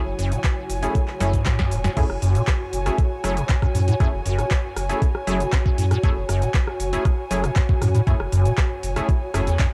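Acid house at 118 BPM in F# minor, gritty and driving, built on an F#m7 chord, where a squelchy, resonant acid bass riff with phaser and tube saturation sweeps its filter over a faint, warbling tape-like pad heard only from 0.1 to 1.9 s, while smooth bowed chamber strings and a deep, thick sub bass both pump with the sidechain, a band-passed, nasal chord stab carries 12-bit sampler crunch and tape echo, and a booming analog drum machine of crisp snare, metallic hats, handclaps, rim click, cabasa and crash cymbal plays a fill from 1.2 s into a drop at 2.0 s, driven by an up-front, thumpy electronic kick, the whole mix captured as a dry hardware recording with transformer saturation and cassette tape.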